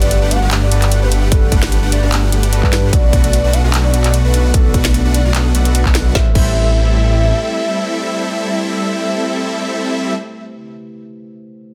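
Emotional and lush, this future bass passage cut from a longer piece opens straight into a drop at 149 BPM in a half-time 4/4 feel with a light swing, sitting in A dorian over Gmaj9, Bm7 and Am7 chords. Huge, bright supersaw chords carry the riff through lush chorus and sidechain pumping. A thick, saturated detuned saw bass pumps up front. A trap drum kit adds a woody snare, metallic hi-hats, handclaps and crash cymbal, joined by a punchy, layered electronic kick from 1.3 seconds until the drums drop out at 6.5 seconds. In the background, a round, dark octave-layered synth lead sings the melody with vibrato, chorus, phaser and digital delay. A barky, gritty overdriven tine electric piano plays accompaniment through a combo amp until 11.7 seconds, all set in light digital ambience under a dense, heavily limited modern master.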